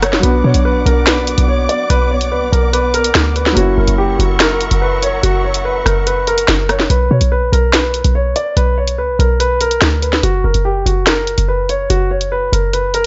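Drill hip hop at 144 BPM with a half-time feel, menacing and tense, cut from a longer piece: a dark, up-front concert grand carries the melody with delay over a punchy, tight 808-style bass and an electronic drill kit of finger snaps, hi-hat, rim click and sharp snare. For the first 6.9 seconds a soft felt-muted upright piano, intimate with audible action noise, sits in the background beneath lush, bowed symphonic strings with expressive vibrato, moving from Bm to F#7. Both then drop out, leaving grand piano, bass and drums to carry the second half to an F# chord at 10.2 seconds, all in a small room with light reverb and a rolled-off top end.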